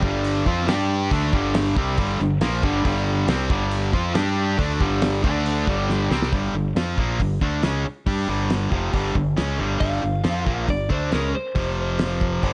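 A straight 4/4 pulse at 138 BPM drives this brooding, gritty classic rock excerpt in G minor, carried by a damped 70s drum kit whose fat snare, tight kick and hi-hat sit dry and dark with a rolled-off top. A distorted electric guitar plays the riff up front through overdrive, bright and picked across its span from F2 to G4, while a second overdriven guitar also plays a riff further back with spring reverb until it stops at 6.3 seconds. Underneath, a growling fingered electric bass runs from F1 to G2, direct and amped with its own overdrive adding bite. A drum fill at 5.9 seconds ushers in the second section, where the harmony returns to Gm before moving to F5 near the close. At 9.8 seconds a lightly driven lead guitar enters with a compressed, slightly broken-up second line between Bb4 and F5, its tone darker than the riff guitars, all within a studio ambience capped at 10.3 kHz.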